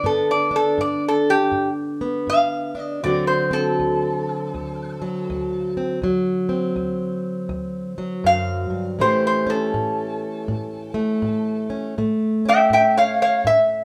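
This short cut from a longer piece sounds like a band playing live together in one room, wrapped in a moderate, roomy studio reverb that gives the two guitars some air while keeping them close and up front. It is acoustic country blues with a soulful, rollicking mood, moving at an easy swung lope in four. A metal-body resonator slide guitar, played with fingerpicks and a steel bar, carries the melody throughout its 13.8 seconds, its tone bright, metallic and nasal. Beneath it, a fingerpicked, plugged-in steel-string acoustic guitar with a boxy, parlour-sized character supplies the accompaniment, reaching down to low bass notes. The harmony moves from G7 to D7 at 3.0 seconds and on to A7 at 9.0 seconds, giving the slide solo a bluesy, dominant-seventh backdrop.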